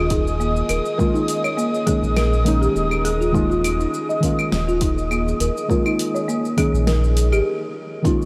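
This peaceful, earthy slice of organic downtempo opens on an Eb7sus4 chord. A deep, mellow chord stab with a soft, warbling vintage tone, chorus and analog delay sits beneath an airy, breathy pad that carries chorus and a touch of 12-bit sampler grit. Over them, a folk marimba played with medium mallets spins woody, rustic arpeggios through its own analog delay, while a round, dark analog bass sits up front. Both the bass and the two keyboard parts pump against the kick. At 0.1 seconds a tape-warm electronic kick and a deep house kit enter at an easy 102 BPM with a light 16th-note swing, the kit adding claves, hi-hat, shaker and a fat snare. The bass drops out at 7.4 seconds, just before a brief break arrives, and the whole mix is soaked in a huge, dreamy reverb tail.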